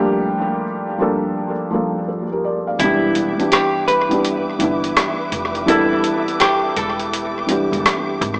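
A soft, thick-felt upright piano opens this reflective, nostalgic lo-fi hip hop fragment under a filter sweep and tape echo, then at 2.8 seconds a clean hollow-body jazz guitar takes the melody through tape echo, joined by a distant, lush bowed string section with vibrato and portamento, a woody, thumpy pizzicato upright bass on gut strings, and a gritty, compressed sampler-style kit of hi-hat and rim click with the kick muted, all in an echo-heavy mix with moderate plate reverb and a small-speaker sound.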